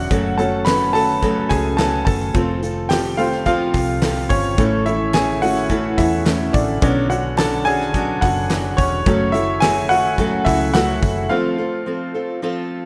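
Hopeful and warm, this piano-driven pop excerpt moves at an easy, straight pace, cut from a longer piece. A bright upright piano sits up front and carries the lead, its woody, slightly detuned tone ringing with long sustain and audible action noise that lends an intimate, worn character. A fingerpicked steel-string acoustic guitar plays a riff beneath it, while a dark, round, foam-muted electric bass and a huge arena drum kit with a fat snare and punchy kick fill out the low end, and very quiet, hollow group handclaps sit far back. The harmony cycles through F#m, F, A and Bmadd9 before returning to F#m and landing on F, and the bass and drums drop out near 11.3 seconds, leaving piano and guitar for a brief break to close. The rough home-demo mix carries light reverb and small-room ambience.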